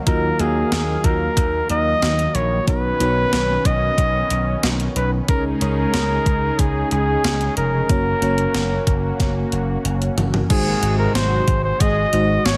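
Set in a light reverb, this short cut from a longer 1980s-style pop piece moves at 92 BPM with an urgent, nostalgic mood, led up front by a smooth-topped flugelhorn with light vibrato over a punchy, amped slap bass and an overdriven, thumpy 12-bit drum machine whose gated reverb and small-room sound frame a drum fill at 9.2 seconds. Behind them, a lush, dreamy FM electric piano with chorus and tremolo and a bold, warbling, detuned analog pad carry chords moving from Ebmadd9 through Badd9, Dbsus2 and Gb. At 10.7 seconds, just after the harmony turns to Ab7, round, mellow synth brass stabs with a filter sweep join.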